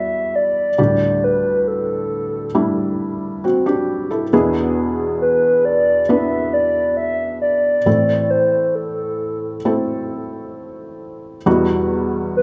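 This twelve-second excerpt from a longer pop piece is led by a hollow, woody synth lead that carries the melody from start to finish, its square-and-triangle tone edged with a noise layer, a gentle chorus and vibrato, sustained notes that speak quickly, and a place up front in the mix. Beneath it, a felt-muted upright piano supplies the accompaniment across the full length, its short-sustaining notes soft and intimate, with the mechanical action noise clearly audible. The tempo is a slow 68 BPM in a straight 4/4, in E minor, tuned slightly below standard pitch at A4 = 438 Hz. The harmony moves from Emadd9 through Dsus4, E7 and Am before returning to Emadd9 at 11.5 seconds, giving the passage an emotional, longing character. A moderate plate reverb surrounds the pair, lending the close, mellow sound a soft halo of space.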